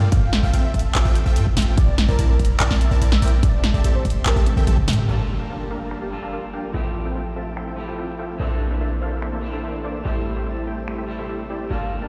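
Awash in a large studio reverb, as if played on a big sound system in a bare room, this bright, lush future bass excerpt moves at 145 BPM with a half-time feel in 4/4, cut from a longer piece. It opens on a drop, where a punchy electronic kick and a layered pop kit with a fat snare, warm hats, handclaps, finger snaps, toms and crash cymbal drive beneath a deep, boomy 808-style bass that sits up front and pumps with the sidechain. A detuned supersaw stab plays a filtered, delayed riff throughout, while a velvety synth lead with chorus and vibrato carries the melody in the background until 4.4 seconds, returning briefly at the end. A drum fill leads to a band accent at 4.9 seconds, the kick drops out, and at 5.1 seconds an electronic impact opens the second section as a slightly broken-up, twangy electric guitar enters with subtle chorus and delay. Beneath it all a very quiet, shimmering, ethereal pad holds sustained chords moving through Fmaj9/A, Bbmaj9#11 and Am7, with Gm9 opening the second section.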